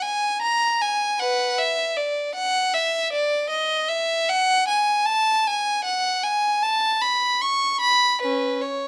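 A rich, focused solo violin, bowed by one player with vibrato and placed up front, sings a radiant, serene baroque-style suite movement in 3/4 at 77 BPM with a rubato feel, ranging from C#4 to C#6 across this 8.9-second excerpt captured by close, detailed microphones in light reverb.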